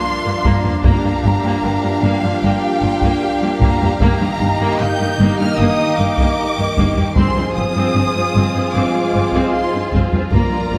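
A lush violin section carries the melody high in its range, its bowed tone soft in attack and expressive with vibrato, while a second violin line moves beneath it in this brooding, futuristic excerpt from a hybrid orchestral and electronic film score. A focused, distant viola section adds accompaniment, and a clear French horn section holds sustained chords in the background, joined by a silky analog string pad with slow attack, long release and an ensemble chorus. The low end fills in within the first half second, as a cello section enters at 0.2 seconds and a dark, woody double bass section at 0.4 seconds, both sitting on a low G beneath the harmony. At 0.4 seconds a taiko ensemble enters, struck with hard sticks in a live acoustic room, giving the 4/4 excerpt its weight. A very quiet concert grand piano adds faint texture with a deep bass. The harmony moves from Bb/G to Eb/G and then Fm/G, and a wet scoring-stage reverb wraps the ensemble in a spacious sound.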